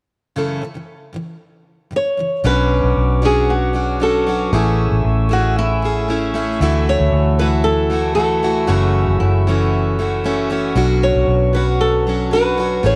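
Tender and wistful, this acoustic pop fragment, cut from a longer piece, moves in a straight four-beat feel. A bright, picked steel-string acoustic guitar opens alone at 0.4 seconds, sitting up front with a touch of finger squeak, and a flamenco guitar on fresh strings enters at 2.0 seconds to carry a fingerpicked melody in a warm voice. From 2.4 seconds a dark, foam-muted vintage electric bass adds a round, punchy low end, and a glass harmonica soon settles in the background with pure, ethereal sustained chords that bloom slowly from a boxy small room. The harmony drifts through F#m7, Bmadd9, Amaj7 and Dadd9 before circling back. Light reverb and a sense of studio ambience give the whole an intimate, gently lit feel.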